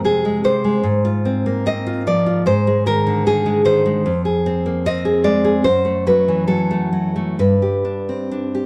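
In a rubato 2/4 that drifts between 63 and 76 BPM, this short excerpt from a romantic piece for solo classical guitar unfolds with an intimate, melancholic mood, its harmony moving from Fm through Fm/Ab, Ab5 and F#m7b5 before arriving on G. A fingerpicked nylon-string guitar, bright with fresh strings and placed up front, spans F2 to Eb5 and is tuned slightly high at A4 = 441 Hz. Light reverb surrounds it within a dark, warm production that carries lossy compression artefacts.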